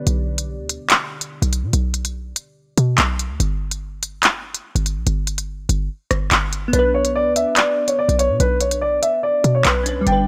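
A crisp, up-front drill drum kit of handclaps, hi-hat and rim click drives this dark, menacing hip hop cut, taken from a longer piece and set at 144 BPM with a half-time feel in 4/4. Beneath it, a short 808-style bass with a punchy sine body, a noise layer and a tight, fast attack that decays sits close in the mix, moving between G1 and B2. For the first 6.7 seconds, drums and bass carry the track alone as an unharmonized break. At 6.7 seconds the harmony settles on B minor as a dark, mellow grand piano enters up front with a melody between B4 and G5. Glassy digital keys with a vintage, warbling character join at the same moment, softer in the background, shaped by chorus, a low-pass filter and a filter sweep. The whole recording is dry and close, with little reverb.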